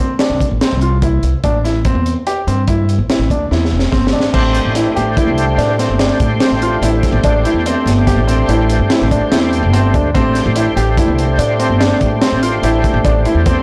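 A blown-out, overdriven recording with light reverb carries this driving, brooding progressive instrumental excerpt in A minor at 145 BPM in 7/4, where a bright, brilliant baby grand piano plays arpeggios over a crunchy, saturated breakbeat kit with a punchy kick and high-tuned snare and a woody, growly pizzicato upright bass up front, until a drum fill at 3.5 seconds leads to a thick, gritty tonewheel organ entering at 4.3 seconds with key click, percussion, chorus vibrato and slow rotary speaker as the harmony moves from Am7 to Am11.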